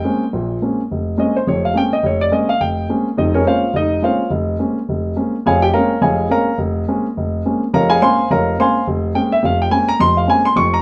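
Jazz in Bb dorian at a brisk, swung 211 BPM, this cool, spiritual fragment of a longer piece features a solo baby grand piano, natural and up front with a short sustain, ranging from F1 to Db6 from 0.0 to 10.8 seconds over a Bbm9 chord that sounds from 0.3 seconds, within a moderate large-studio reverb.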